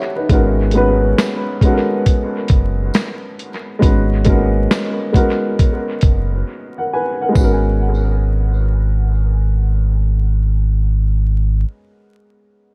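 A dusty, echo-heavy lo-fi hip hop mix opens under a bed of vinyl crackle, cut from a longer piece and settling into a melancholic, reflective mood at 68 BPM in 4/4 with a 16th-note swing, in G# minor. A dark, woody upright piano carries the accompaniment from the start, its boxy, mellow tone softened by a low-pass filter and trailed by dub echo, resting on a G#m11 chord. Just behind it, a deep, sine-like sub bass with octave sits up front with a fast attack and sustained notes, holding the low end until 11.6 seconds. A gritty, compressed sampler-style drum kit with a thumpy kick, medium-tuned snare, hi-hat and finger snaps brings a tape-flavoured 12-bit crunch, while a jingly tambourine, soaked in dub echo, sits distant in a large room far in the background. A break at 6.5 seconds leads into a new section at 7.4 seconds, where the drums drop out shortly after and the piano and bass carry on, the piano continuing alone to the end at 12.7 seconds.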